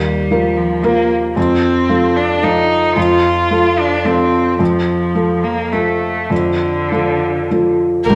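In a rubato 3/4, this reflective, fragile neoclassical piece pairs a soft, mellow felt-muted upright piano up front with a rich bowed cello second line carrying a slapback echo, moving from Ebsus2 to F inside a wet echo-chamber reverb, until at 8.1 s a smooth vibrato violin melody arrives alongside a very quiet, expressive viola, a ringing thumb-plucked Celtic harp in the background and a bowed double bass, just as the recording cuts off at 8.2 s.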